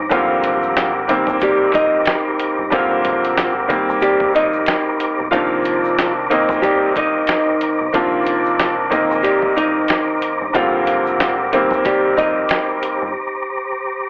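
A fingerpicked nylon-string guitar carries the melody up front in this tough, gritty boom-bap hip-hop excerpt at 92 BPM, with a swung 16th feel, joined by a woody, slightly detuned upright piano run through cassette tape and plate reverb, and a mellow, flute-like tonewheel organ holding chords with key click, chorus vibrato and a fast rotary speaker. Underneath, a compressed, sampler-style drum kit with a thumpy kick, medium-tuned snare and hi-hat sits beside a round, dark fingered electric bass in the background and a very quiet, grainy tube shaker. The harmony moves from Abmaj9#11 to Cm9 and back, the whole mix has a telephone-like filtering in a moderate room, and a brief break from 13.2 seconds leaves only the organ sounding until 14.1 seconds.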